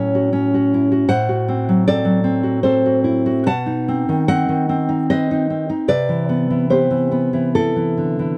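A thumb-plucked nylon-string guitar, warm and up front, plays this intimate, wistful romantic fragment alone in a rubato 3/4 at around 67-78 BPM, moving from F#m/A through F#dim/A and B7b9 to Cmaj7 within 8.4 seconds, captured dry and close in a 1970s-style studio sound and cut from a longer piece.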